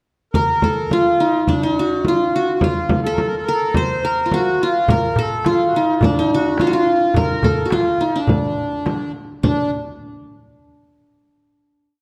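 A bright, fingerpicked qanun opens at 0.3 s with an ornamented modal melody in D maqam saba, shadowed by a reedy accordion carrying the same line with its own ornaments and a deep, close frame drum played with soft hands, before a crisp metal-shelled darbuka joins in the background at 4.9 s in this festive, passionate Arabic maqam ensemble piece at 106 BPM in 4/4, which closes on a final note ringing in a reverberant recital hall from 9.4 s.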